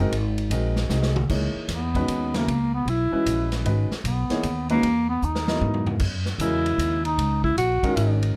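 A smooth, vintage grand piano and a woody, growly pizzicato upright bass open this intense, cool modal jazz excerpt in a swinging three, with a distant, roomy big-band drum kit and its punchy kick coming in alongside them, before a clear bass clarinet with light vibrato and scooped notes enters up front at 1.7 seconds to carry the solo line over a drum fill at 5.2 seconds, set in light reverb.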